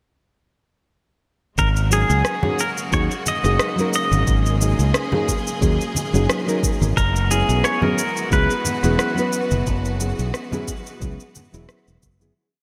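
A bright, 1980s-style digital production sits in a lush hall reverb, giving this short sunset chillout piece a relaxed, warm glow with a lightly swung 16th-note feel. Most parts arrive together at 1.6 seconds: a twangy, clean pedal steel guitar plays a free-flowing melody up front with volume swells, slides and a subtle chorus and digital delay, while a distant, focused string section holds lush bowed chords with vibrato beneath it. A modern, bright fingered electric bass drives a syncopated riff directly at the front of the mix, and an electronic kick drum with a soft, knocking, tape-tinged tone pairs with electronic cabasa and rim click in a light lounge beat. A nylon-string guitar joins just after with full-bodied, thumb-plucked chords in dotted rhythms, and low-tuned congas with a thick skin sound follow, played with soft hands. The harmony moves between two suspended ninth chords before the whole piece fades out from 8.8 seconds to its close.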